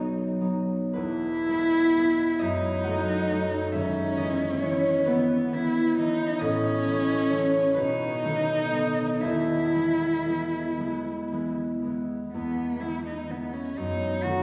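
A slow, rubato 6/8 sway at 36-46 BPM, counted in dotted quarters, carries this serene romantic duo in E major, cut from a longer piece. A single bowed cello sings the melody up front, expressive with vibrato and portamento, while a concert harp, also up close, accompanies with fingerpicked, ringing chords that move from E through A and B7 and back. Both instruments, the cello warm and the harp acoustic, bloom inside a lush church reverb, and a brief new section begins at 12.3 seconds.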